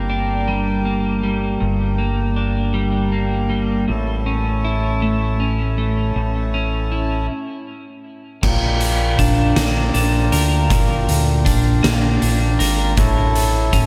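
A slow, straight 6/8 pulse carries this brooding, cathartic post-rock passage, cut from a longer piece. A reedy, breathing harmonium holds mellow sustained chords while a clean, compressed electric guitar picks arpeggios up front, its tone bathed in lush chorus and a diffuse ambient delay. Beneath them, a growling fingered bass with overdrive anchors the low end as the harmony moves from Gm to A. After a brief stop from 7.3 seconds, an oversized low-tuned drum kit crashes in at 8.4 seconds, with dark cymbals, a fat snare and a punchy kick, saturated and gritty in a bright, pumping stone room. The chords shift to Bb6 before returning to A, and a lush hall reverb gives the whole mix a dreamy, soaked atmosphere.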